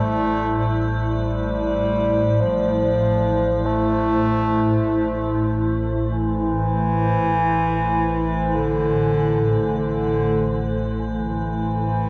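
Soaked in a huge reverb and the warbling pitch drift of worn cassette tape, this desolate, unsettling dark ambient drone excerpt sets a distant, punchy bass clarinet melody with delay up front over a moody, detuned sawtooth pad with chorus, a rumbling, ominous low drone with phaser, and a faint, eerie metallic FM texture.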